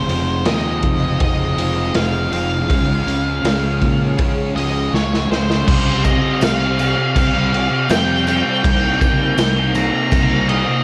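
A saturated, gritty garage drum kit sits up front in this hazy, melancholic shoegaze and dream-pop excerpt at 81 BPM, where a dark octave-fuzz lead guitar sings its melody through tape echo over a thick fuzz guitar riff, a punchy fingered electric bass and vintage sawtooth string-machine violas swirling with phaser and ensemble chorus, while an overdriven semi-hollow guitar with reverse reverb drops out at 5.7 seconds after a drum fill and a bright, jingly tambourine slips in at 6.0 seconds, all colored by a cassette home recording's soft room reverb as the chords drift from Fm7 to Cm7.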